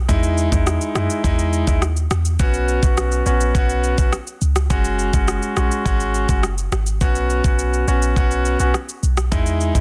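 Dancehall at 104 BPM in B major, bouncy and sunny, where a deep, boomy 808-style bass with a sine-like, fast-attack decay sits under an intimate, up-front concert grand piano with audible action noise and sidechain pumping moving through Emaj7, Bsus2 and F#sus2, while an electronic afro-pop kit of knocking kick, rim click and shaker carries vintage 12-bit sampler grit, all set in a digital ambience with a dense, heavily limited modern master in this short cut from a longer piece.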